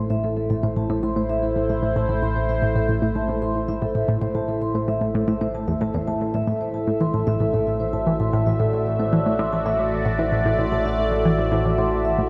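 A wet cathedral reverb with a 5.6-second decay places this expansive, mysterious piece of ambient, sequencer-driven space music in a vast, echoing space. At 113 BPM in straight 4/4, a tight, driving sequenced synth plays a riff between E2 and E3, its detuned sawtooth and triangle tones shaped by a filter pluck and treated with chorus, phaser and analog delay. A sweeping resonant pad sits up front with sustained chords from A2 to E5, and its wave-folded sound evolves through a slow attack and long release under chorus and phaser. A vibraphone played with soft mallets, motor off, rings out metallic arpeggios between A4 and C6 through analog delay, with a boxy small-room character. Underneath, a fat analog bass holds A1 on a thick, detuned sawtooth, and this cut from a longer piece rests on a single A minor chord in A dorian for its 12.3 seconds.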